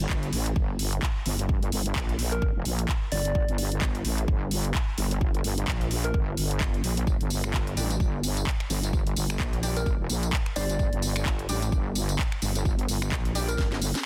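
A heavy, detuned sawtooth wobble bass sits up front in this bouncy, gritty bass house excerpt at 129 BPM in G minor, its saturated, chorused tone pumping against the kick while a 58% swing on the 16ths keeps the groove loose. A punchy, layered electronic kick drives the 4/4 beat, joined by an overdriven house kit of cracking snare, bright hats, handclaps, finger snaps and tambourine. At 2.3 seconds a round, gentle FM lead with a keys-like strike and vibrato enters in the background, treated with chorus and digital delay, and it returns at 9.8 seconds. From 7.8 seconds a bold orchestra-hit-like synth stab adds ring-modulated, noise-layered bite with a filter sweep, cassette-tape colour and its own reverb, pumping behind the mix. The sound is dry and dense, heavily limited in a modern master, and a drum fill at 13.6 seconds closes the section.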